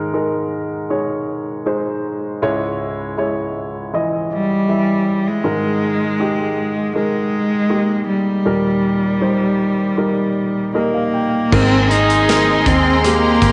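In a straight 4/4 pulse, this tender, hopeful pop ballad excerpt opens on a woody, up-front upright piano, joined at 4.3 s by a focused, bowed solo cello carrying the melody with vibrato and a slapback echo, all set in a wet echo-chamber reverb. After a piano fill at 10.4 s, the full arrangement enters at 11.5 s: a smooth string section holding background chords, a distant, very quiet violin section playing a dark sul tasto second line, a clean, compressed electric guitar picking soft arpeggios, a round, foam-muted electric bass, and an acoustic drum kit with a punchy kick, snare, hi-hat and crash cymbal.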